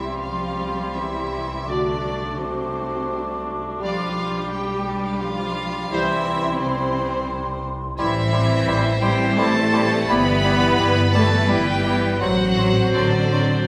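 A distant chamber violin section carries the melody with a clear, smooth tone and light vibrato in this elegiac, melancholic classical excerpt, cut from a longer piece in 3/4 at 85 BPM with uneven, rubato beats. Beneath it, a second violin section and a viola section, both rich and focused, sit in the background with vibrato. A hollow silver concert flute and a bright, close-miked clarinet add second lines. A soft-attack bassoon sounds distant and roomy in the accompaniment, while a bowed double bass section, close and focused, and a smooth, even cello section anchor the bass. At 1.7 s a mellow French horn section enters with sustained chords and a tight, present trumpet section adds stabs. The harmony starts in C major and turns toward E minor from 8.0 s, all set in the wet reverb of a recital hall.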